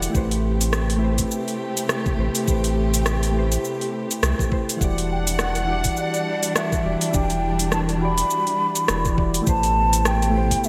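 Sunset chillout with a smooth, wistful mood, where soft, round electric-piano-like synth keys with chorus and delay and a dark, bowed studio string section with expressive vibrato and portamento hold Am9 and Em9 chords over a deep sine sub bass, a knocking electronic kick, and an up-front R&B kit of metallic hi-hats, rim clicks and shaker in gated reverb, and an airy, hollow concert flute with digital delay joins them at 5.1 s, all bathed in lush hall reverb and bright 1980s-style digital production.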